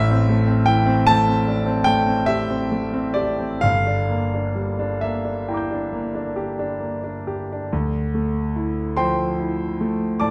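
A clear concert grand piano, up front and natural, carries this short solo excerpt of impressionist classical music, its deep bass and long sustain ringing across a range from G1 to G6. The mood is mysterious and nocturnal, set in D minor and 9/8 at a slow 42-54 BPM counted in dotted quarters, with a free rubato feel. The harmony drifts from Am7 to Gm6 at 3.6 seconds, then settles onto a Dm11 as a new section begins at 7.7 seconds. A wet recital hall reverb surrounds the instrument, and the production leans dark. The recording is cut from a longer piece, ending at 10.3 seconds.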